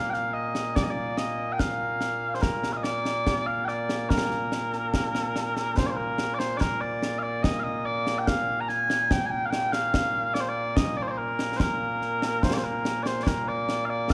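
Mellow small bagpipes carry a sweet, continuous melody with vibrato up front, joined almost at once by concert snare and bass drum with dark cymbals in this proud, ceremonial piece of Scottish traditional pipe music in straight 2/4, cut from a longer piece and set in a moderate concert hall reverb, with a new section arriving at 5.8 seconds.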